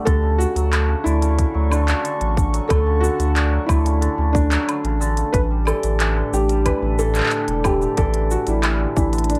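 A straight 4/4 groove at 91 BPM comes from a tight, overdriven electronic kick drum and an overdriven organic electronic kit of crisp hats, handclaps, shaker and woodblock, both re-recorded in a large room, under a deep, round sine sub bass sitting up front in this playful, warm folktronica excerpt in D major. A soft, felt-muted upright piano carries an intimate melody while a mellow cimbalom plays shimmering, hammered arpeggios. A dark vibraphone with medium hard mallets and slow motor vibrato adds a second line through tape echo, and a warbling, lo-fi, detuned pad holds nostalgic chords in the background. The harmony moves from Dmaj7 to A7sus4 at 5.3 seconds, with plate reverb on the melodic parts and a light reverb over the mix.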